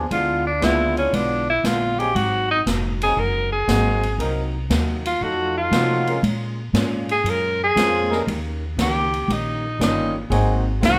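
A clear tenor saxophone leads this short cut from a longer big band swing piece, its soft-attacked, scooped notes carrying a vintage vibrato up front through an energetic, joyful solo in Ab mixolydian. At 118 BPM in 4/4 with a swung eighth-note feel, the tune moves through a chord sequence that runs from Ddim7 through Cm7b5 and F7b9 to Bbm7, Eb7 and back to Ab7. Underneath, a woody, thumpy upright bass sits forward in the mix, while a swinging big-band drum kit marks time on hi-hat, ride cymbal and a medium-tuned snare. A mellow trombone section holds sustained chords with light vibrato until 10.5 seconds, joined by a grand piano with audible action noise and long sustain. A full-bodied, picked steel-string acoustic guitar with audible finger squeak fills in from the background, and a moderate large-studio reverb lends the ensemble a natural, roomy sound.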